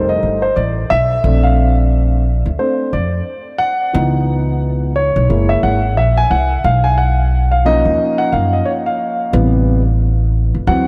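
Swung sixteenths in 4/4 give this short jazz-hop cut from a longer hip hop piece a cool, relaxed lean. A dark, mellow grand piano with a vintage, smooth tone and long sustain takes a solo across all 10.9 seconds over chords such as F7, Bbmaj7, C#m7 and Bmaj9#11, while a woody, thumpy pizzicato upright bass on steel strings sits up front beneath it. Huge ambient reverb soaks the mix in a dreamy haze.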